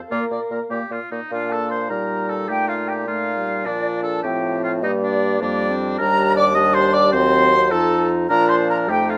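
A quick, lively classical-period movement for wind quintet in Bb major and 6/8 at 102 BPM, cut from a longer piece, with an airy, tongued concert flute carrying the melody with expressive vibrato from 0.0 seconds. An oboe, up front with light vibrato, takes the second line, while a clear clarinet and a vintage-toned French horn supply accompaniment and a smooth-topped bassoon anchors the bass. The cheerful harmony moves from Bb through Gm and Ebmaj7 to an F7 that settles back on Bb at 8.3 seconds, all in a light reverb.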